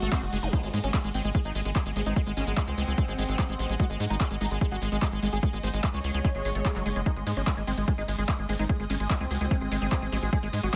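From the opening moment, this hypnotic psychedelic trance excerpt at 147 BPM drives forward with a punchy electronic kick, an overdriven kit of handclaps, bright hats and ride, a tight sawtooth sequencer bass, a squelchy, resonant acid bass line with chorus, tape grit and dub echo, and a thick, nasal, detuned unison lead that warbles through phaser and echo, all over an evolving, morphing wavetable pad and a rich bowed string section in the background, while a faint formant-sweep wobble bass surfaces at 2.0 seconds and an electronic swell enters at 6.4 seconds in a dry, close mix.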